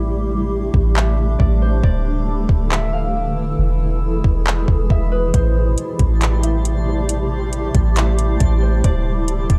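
Atmospheric cloud-rap with a half-time hip hop feel, this short excerpt from a longer piece sounds melancholic and spacious, set in a dark, digital ambience. A blurred, evolving granular pad holds sustained chords from the start, its built-in reverb washing over a deep, round 808-style bass that sits up front. A thumb-plucked concert harp carries the ringing melody, with delay trailing its notes, while the harmony moves through Am7, Dsus2 and E before returning to Am7. A soft, tape-tinged R&B drum kit enters at 0.7 seconds with a gentle kick, metallic hi-hats and handclaps, though the opening stretch to 5.3 seconds still works as a break. At 5.9 seconds a faint, sparkling granular layer with an octave-up FM shimmer drifts in, adding a twinkling glow to the closing moments.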